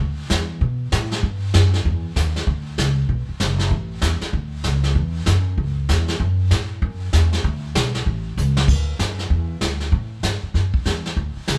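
A live, single-room sound with light reverb frames this swinging, playful western swing and country excerpt in D major, moving at a brisk 193 BPM in 4/4 with a 63% swing on the eighth notes. The upright bass opens at 0.0 seconds, plucked pizzicato on steel strings with a woody, thumpy tone that sits up front and ranges from F#1 to B2. A vintage brush drum kit joins at 0.3 seconds, played with brushes on the snare alongside hi-hat, kick, snare and crash, its dark cymbals, medium-tuned snare and punchy kick heard through a roomy, distant small-room character with a rolled-off top. A short drum fill from 8.4 to 8.7 seconds leads into a new section that carries on until the cut at 11.6 seconds. The pairing of the warm, earthy bass and the brushed kit gives the track a loose, old-time dance-hall bounce.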